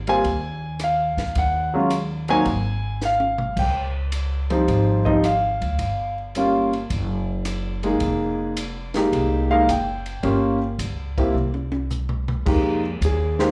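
Smoky and cool, this brief excerpt of a swinging jazz piano trio captures a live club gig heard through the venue's PA, with light reverb hanging in the room. An intimate concert grand with deep bass, audible action noise and a slapback echo carries the melody up front over chords such as Dbmaj9#11 and Fm11, while a woody, growly pizzicato upright bass with steel strings thumps beneath. A compact, dry cocktail kit with dark cymbals, a high-tuned snare and a punchy kick adds fills at 3.0 and 11.3 seconds before the piano takes a solo at 12.5 seconds.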